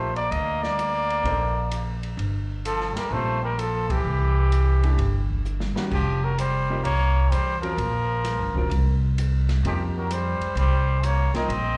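A swung 4/4 pulse at 129 BPM drives this brief modal jazz passage, cut from a longer piece, with a spiritual yet cool mood. A mellow, breathy trumpet carries the melody with soft attacks and scooped notes, joined by a buzzy, thin trombone in a metal mute playing a second line, both touched by slapback echo. A clear, woody upright piano supplies accompaniment with short sustain, while the pizzicato upright bass sits up front with a growly, steel-strung tone. The drum kit stays dark and smooth, entering at 0.2 seconds with dark cymbals, a medium-tuned snare and a boomy kick. The band hits an accent at 3.8 seconds, and a drum fill leads into the second section at 5.9 seconds as the harmony moves from Gmadd9 through C to F9sus4. It sounds like a live club gig heard through the venue's PA, with a roomy reverb and a dulled top end.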